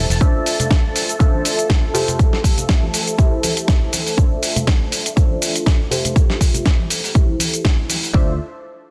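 The recording has a dense, heavily limited modern sound with light digital reverb, and a filter sweep runs across nearly the whole clip, which is cut from a longer piece of filtered disco house in D minor. The groove sits at 121 BPM in 4/4 with a swung sixteenth feel, and the mood is groovy and sensual. A punchy, tape-warm electronic kick sits up front from 0.2 seconds. Beside it, a gritty, compressed sampler-style soul kit supplies hi-hat, snare and cabasa, joined by ringing acoustic maracas and congas, with the hats and percussion pumping. A funky, detuned sawtooth polysynth comps through chorus and phaser over Dm9, Fmaj9 and Am7/E. Behind it, a lush vintage string machine holds slow-attack chords with ensemble chorus and sampler grit, both pumping beneath a low-pass filter. A dark, round fingered electric bass surfaces only briefly at the very start and again near 8.1 seconds.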